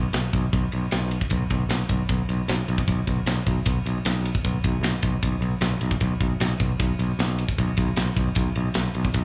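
Hard rock at 153 BPM in a menacing, aggressive mood, this short cut from a longer piece sets a growly, overdriven picked electric bass sitting low around B1 against a tight, gritty metal drum kit of kick, snare and ride cymbal with a rolled-off top, both up front in a live club sound with little reverb.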